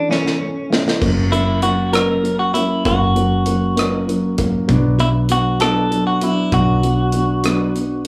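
A band playing together in a small room, with moderate reverb, carries this dramatic, aching six-eight pop ballad cut from a longer piece, moving at 65 BPM in dotted quarters over chords of A, F# and Bm. Up front, a bright, twangy, clean electric guitar plays the compressed, picked melody, while a dark, woody upright piano with long sustain provides the accompaniment. The drum kit, with its punchy kick, medium-tuned snare, rim click, hi-hat, crash and rolled-off top, opens with a fill from 0.1 s, and a foam-muted fingered electric bass joins at 1.0 s.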